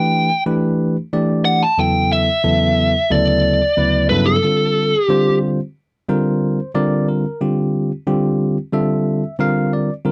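A dry, close 1970s-style studio sound with light reverb frames this soaring, funky jazz fragment at 91 BPM in straight 4/4: a biting, overdriven, picked lead guitar sits up front, carrying the melody until 5.4 s over a bell-like tine electric piano, which moves through Em7, Dmaj9 and Gmaj9, then plays on alone into a Bb lydian passage that opens on Bb6 at 5.8 s.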